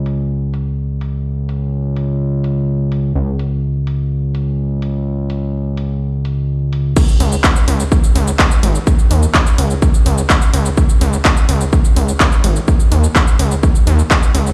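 The sound is dry at the source but carries the hard echo of a stone room, as if replayed through a big sound system in a bare space. This is a short cut from a longer melodic techno track at 126 BPM in a straight 4/4, with a driving yet melancholic mood. A gritty, aggressive synth bass sits up front from the start, mixing sawtooth, sine and triangle tones with oscillator sync and a plucked filter shape, its tube saturation and sidechain pumping making it feel restless and evolving as it moves between G#1 and D#2. A layered, overdriven house kit of crash cymbal, handclaps, hi-hat and shaker runs underneath, its hats, cymbals and percussion muffled by low-pass filtering. The drop arrives at 7.0 seconds, when a punchy, overdriven electronic kick enters up front and pushes the groove harder through the final stretch.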